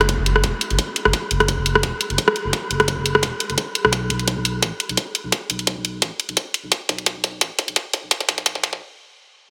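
Liquid drum and bass at 172 BPM in 4/4, this uplifting, lush passage, cut from a longer piece, is a build-up driven by a filter sweep from start to finish, with a light swing on the sixteenths. A layered, overdriven electronic kit sits up front with bright hi-hats and rim clicks. Alongside it, a knocking electronic kick, re-recorded in a small room and high-pass filtered, also sits up front. A deep, mellow sub bass with an octave layer blends sine and triangle tones into a full, sustained low end with a fast attack. A drum fill arrives at 3.9 seconds and carries the tension until the parts stop at 8.8 seconds, leaving a brief gap to 9.5 seconds. The whole mix is soaked in a huge, dreamy ambient reverb with a long tail.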